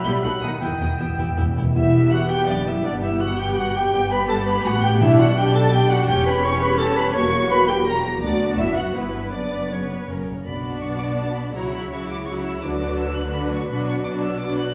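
A chamber violin section carries the melody of this stormy, urgent classical-period orchestral movement in quick 3/4 at 166 BPM, its sul tasto tone soft and intimate, as the music moves from E minor into B minor at 6.1 s. A second, darker violin section, a pure-toned flute section and a distant, roomy clarinet trace supporting lines, while a clear oboe sounds only briefly at the start, mellow French horns hold chords in the background until 10.3 s, expressive violas fill the middle, and smooth cellos and a shadowy double bass section anchor the bass. Timpani struck with hard mallets add crisp fills, including one at 10.1 s, and the ensemble is heard from further back in a reverberant recital hall.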